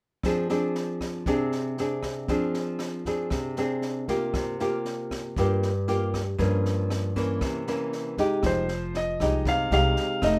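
Bossa nova in F dorian at 117 BPM, wistful and melancholic and cut from a longer piece, where an up-front, fingerpicked nylon-string guitar with a deep classical tone carries Fm6, C7sus4, Gm7b5 and C7b9 over a quieter small-room open jazz kit of boomy kick, rim click and high-tuned snare, until a woody, thumpy pizzicato upright bass on gut strings enters at 8.4 seconds and an intimate concert grand piano with audible action noise takes the melody at 8.5 seconds over Fm9, under light reverb.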